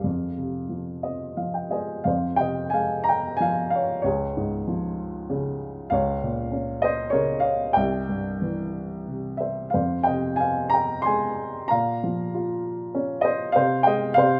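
Moody and cool, this fragment of a longer classical piece is a lyrical solo for upright piano, moving in a rubato triple metre. The piano alone carries the whole 14.4 seconds, its dark, woody tone and short sustain giving each note a mellow, natural character. An early fill from 0.7 to 2.1 seconds opens into a longer passage that ranges from the low bass to the upper treble. The harmony turns from F minor through D-flat and B-flat minor chords, passes through a C chord at 7.8 seconds, and settles on an F minor chord over C near the close. Close, detailed microphones place the instrument up front, with only light reverb around it.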